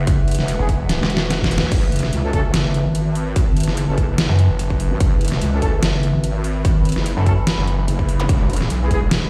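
Heavy wobble dubstep at 146 BPM in F# minor, with a menacing half-time feel in 4/4, cut from a longer piece. A chorused, overdriven wobble bass and a punchy electronic kick run throughout alongside an overdriven drum kit with deep snare and metallic hats, while a snarling, growling distorted saw bass bursts in at 0.6 seconds and returns from 4.3 to 7.9 seconds, and a drum fill arrives at 0.9 seconds. Dark, distant brass stabs with dub echo, a warbling, nostalgic lo-fi pad pumping under sidechain, and faint electronic swells and zaps sit behind, all played back through a big sound system in a bare stone room.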